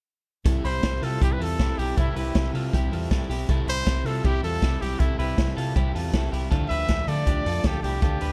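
Breezy and nostalgic, this short clip of jangly indie pop sets a bright, forceful trumpet melody with light vibrato over picked guitars: a crunchy overdriven part picks out the accompaniment while a clean one spins arpeggios, both carrying analog delay like the trumpet. Underneath, a dark, round, foam-muted fingered bass and a punchy, up-front vintage acoustic kit of kick, snare and hi-hat drive a straight 4/4 groove, with the harmony sitting on C before moving to Dm at 6.5 seconds. The small-room mix is echo-heavy and shows lossy compression artefacts.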